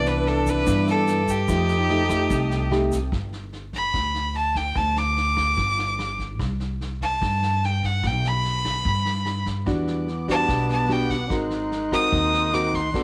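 Sunny and relaxed, this bossa nova excerpt puts an up-front, boxy bowed fiddle with light vibrato, airy bow and a cassette-tape tint on the melody over a woody, growly pizzicato upright bass and a vintage brush kit with a tight kick and rim clicks, while a close-miked jazz trombone, a fingerpicked classical nylon-string guitar and a veiled, con sordino violin section in the background, all three bathed in plate reverb, fall away after the opening bars and return at 9.7 seconds, and a grainy egg shaker adds brightness only at the start of this home cassette recording.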